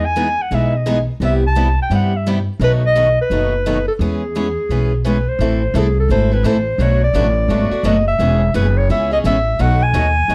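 Swinging and playful, this excerpt of acoustic string swing puts a breathy, subtone clarinet with light vibrato up front on the melody, over two picked acoustic guitars, one brilliant-toned steel-string and one boxy swing-style, and a woody, thumpy pizzicato upright bass on gut strings, in a dark production with moderate studio reverb.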